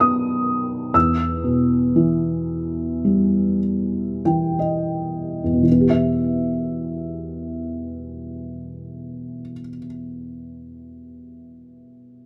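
A felt-muted upright piano plays alone from 0.0 to 12.3 seconds in this wistful, dark fragment of a lyrical classical solo, its soft, boxy, thick-felt tone sitting intimate and up front with audible action noise under close, detailed microphones and little reverb, moving freely in rubato at 39-65 BPM in E harmonic minor from a B chord to E minor, slowing through its opening passage with a fill at 3.6 seconds before a new section begins at 5.7 seconds.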